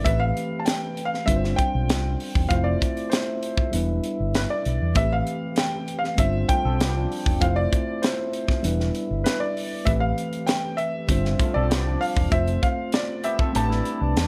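A concert grand piano carries the melody from the first moment, its intimate, natural tone bringing a touch of audible action noise, while a worn, slightly out-of-tune tine electric piano with light overdrive fills in the accompaniment beneath it. This is lush 1970s-style soul in A minor at 98 BPM in a straight 4/4, with a cinematic, silky mood, heard as a short cut from a longer piece. A tight funk drum kit enters at 0.1 seconds, up front with a high-tuned snare, hi-hat and tight kick, and a dark, round fingered electric bass sits equally forward. A very quiet, mellow French horn section holds sustained chords with light vibrato in a vintage, classical style. An electric guitar through a small old amp, twangy and slightly broken-up with spring reverb, slips in a brief riff at 6.5 seconds and returns at 11.4 seconds to play through the end. The harmony cycles through Am9, G7sus4, Fmaj7 and Em7, closing on Am11, all set in a small room.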